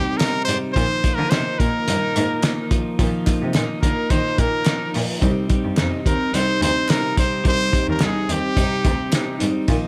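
A bright trumpet carries the melody up front in this wistful, bittersweet stretch of jangly indie pop, its pop-style line sitting between G4 and C5 with vibrato, a smooth top and a slapback echo. The drum kit, entering at 0.2 s, is the loudest part: a cloth-damped, thuddy acoustic kit of hi-hat, tight kick and fat snare, captured muffled and gritty in a small room with a rolled-off top and placed up front. A very quiet group handclap adds crisp, compressed percussion. In the background, a fingerpicked plugged-in jumbo acoustic guitar with fresh strings gives full-bodied accompaniment, finger squeak included, alongside a clean, picked twelve-string electric guitar playing compressed arpeggios. From 0.5 s a single bowed cello supplies a warm, even bass line with vibrato, heard at a distance. At a straight 108 BPM in 4/4 and C minor, the harmony moves from Cm to Bbsus4 and back to Cm under light reverb, in what is cut from a longer piece.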